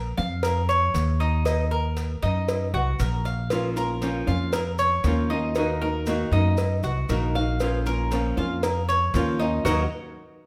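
The Cuban tres stands out from the first moment, its doubled metal strings and octave-doubled courses giving the picked arpeggios a metallic sheen up front. This is a nostalgic Cuban son and guajira in Bb minor at 117 BPM, moving in a straight 4/4 between Bb minor and Eb minor chords. A woody upright bass with steel strings plays pizzicato beneath it from the start, while a round, low-tuned cowbell and grainy maracas, the maracas sitting further back in the mix, fill in the percussion. At 3.5 seconds a bright, fingerpicked flamenco guitar joins with accompaniment. The whole band closes on an accent at 9.7 seconds in this short cut from a longer piece, all set in a moderate large-studio reverb.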